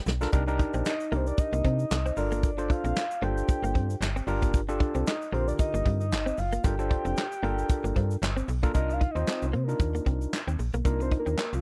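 Dry and close in a 1970s studio manner, this late-night, danceable early-eighties boogie funk excerpt opens with a short drum fill and sets a snappy, metallic slap-like FM bass and an up-front brush drum kit with tight kick, handclaps, hi-hat and snare under a grainy tube shaker in the background. A barky, gritty overdriven tine electric piano plays through the Cm7, Gm9 and Ebmaj13 changes, joined by a clean, compressed direct-recorded electric guitar riff with analog chorus and a round, dark octave-layered synth lead with phaser and vibrato that takes a soft solo over Cm11 from 8.7 s.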